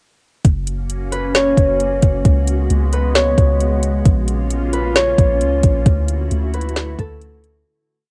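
A fingerpicked concert harp carries the melody from 1.1 seconds, its ringing acoustic tone passed through cassette tape and analog delay as a sparse, looping phrase repeated like a sampled loop. This is floating, dreamy atmospheric cloud-rap in 4/4 at 133 BPM with a half-time feel, set in F# major and tuned to A4 = 439 Hz. Up front, a smooth, electronic R&B drum kit lays down a sparse half-time beat with a soft kick, woody snare and metallic hats, the hi-hats breaking into fast rolls under a tape-colored sheen. A deep, round 808-style bass holds long, dark sub notes that follow the kick and bend with pitch slides. Behind them a glassy, ethereal FM pad sustains mellow chords through F#, C#7sus4, A#m and Dadd9, thickened by ensemble chorus and its own reverb and pumping against a sidechain. The whole piece is a single verse recorded at home on cassette with a dry sound, and it fades out from 5.9 seconds.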